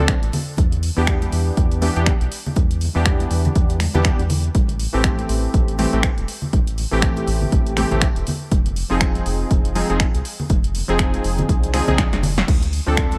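Deep house cut from a longer piece, with a deep, warm mood and a swung sixteenth feel: up-front detuned sawtooth key stabs with chorus, a filter sweep and dub echo pump against a round, dark bass with tube saturation, while a punchy electronic kick drives the groove alongside a drum machine's snare, hi-hat, finger snaps and crash cymbal, background congas carry tape echo in a dry, echo-heavy mix, and a faint electronic swell at 11.6 seconds leads into a drum fill at 12.0 seconds over chords moving from Dm7 through Em7 and Am7 to Fm7.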